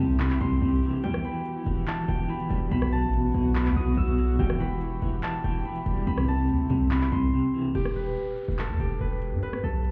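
The recording sounds muffled, as if heard through a wall from inside a club, with club reverb and a small room ambience around it. This menacing, melancholic trap cut, taken from a longer piece, moves with a half-time feel. A bright, ringing concert harp carries the fingerpicked melody high above a distorted 808-style bass that sits up front, saturated, heavy and aggressive, with a noise layer and a fast attack. A slightly broken-up, twangy electric guitar with tremolo plays accompaniment in the low register, backed by a chamber string section holding sustained chords with a reedy, gut-string, period-style tone in the background. The booming analog drum machine brings handclaps, metallic hi-hats and a rim click, and a dark, expressive studio string section stabs briefly at 1.0 and 4.4 seconds. Short breaks interrupt the groove, and around 7.7 seconds the guitar and chamber strings drop away while a background downlifter closes out the final stretch over harp, bass and drums.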